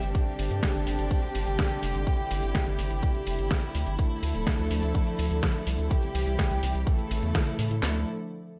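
Dark, warm production with light reverb and a digital ambience frames this melodramatic, nostalgic italo disco excerpt, cut from a longer piece. A bowed chamber string section sits up front with sustained chords, played sul tasto with light vibrato, a soft attack and a smooth top, close and intimate. Beneath it, a round analog bass with a deep, nasal, sine-like tone and fast attack holds the low end, also placed forward. A punchy house drum kit, tape-warm and re-recorded in a large room, supplies handclaps, kick and a cracking snare, layered over a detuned 8-bit drum machine whose sampler-style hi-hat and medium-tuned snare share the kit's studio reverb. The harmony moves from Gsus4 to Dmadd9 at 4.0 seconds, then through C and A before returning to Dmadd9 at 7.8 seconds.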